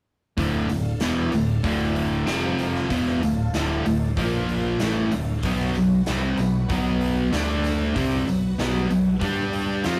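A straight 4/4 groove at 95 BPM drives this brooding, swaggering classic rock passage in D dorian, cut from a longer piece and running as a single section from 0.4 to 10.0 seconds. A big rock drum kit sets the pulse with a punchy kick, a medium-tuned snare and hi-hat, its sound airy and polished in a large room, while a very quiet, jingly tambourine sits far beneath it. Two picked electric guitars play the riff: one, distorted and compressed, sits up front, and the other, overdriven, stays in the background, both ranging from D2 to G4. A fingered electric bass with a direct tone anchors the low end from D1 to G2, and a very quiet phased string machine holds sustained chords with a swirling, vintage sawtooth character, slow attack and long release. The harmony moves from Dm through power chords on F, Bb, B, D and G, and the whole band comes across as a rough rehearsal-room recording with warm saturation and moderate reverb.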